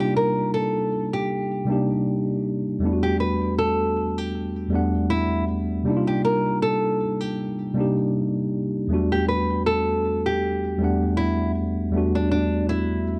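A small, fingerpicked nylon-string guitar carries the melody up front, its acoustic tone set in a plate reverb as it moves between D4 and B4. Beneath it, a mellow tine electric piano plays the accompaniment from E2 up to F#5, sitting close and direct with a worn, slightly out-of-tune character that sounds clean yet gently aged. Both parts play together throughout the 13.2-second clip, which is cut from a longer hip hop piece with a lightly swung sixteenth-note feel. The harmony alternates between Cm11 and Em11, giving the passage a hazy, nostalgic mood. A moderate small-room ambience and the soft grain of cassette tape wrap the whole recording in a faded, intimate glow.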